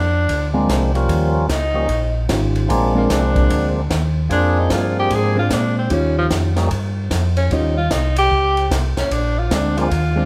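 Soul jazz organ trio in a bluesy, greasy mood, swinging at 150 BPM in Bb mixolydian, cut from a longer piece with the band playing live together in one large room. A bright tenor saxophone solos from the start, up front with light vibrato, soft attacks and scooped notes, over chords that move between Bb9 and Eb9. Beneath it, a mellow tonewheel organ carries the bass line with a round, dark tone, key click and a slow rotary speaker. A second, percussive tonewheel organ voice, full and clean with second-harmonic percussion, plays melody alongside the saxophone from 0.5 to 6.7 seconds. A hollow-body jazz guitar adds dark, compressed, fingered accompaniment, while a compact cocktail drum kit, with dusky cymbals, a high-tuned snare and a punchy kick, sits lower in the mix. A moderate studio reverb gives the room a natural sense of space.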